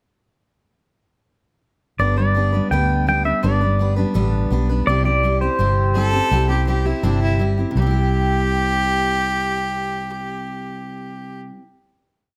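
From 2.0 seconds a round, dark, foam-muted electric bass plays a two-beat root-and-fifth line with walk-ups under folk strumming on a full-bodied dreadnought and a clean pedal steel singing a motif-based melody with volume swells, before a clear, biting fiddle enters at 5.9 seconds with answering blues licks, all in an easygoing, down-home honky-tonk piece at 166 BPM in C major that moves from G to C and settles on a final chord, captured with close, detailed microphones and light reverb.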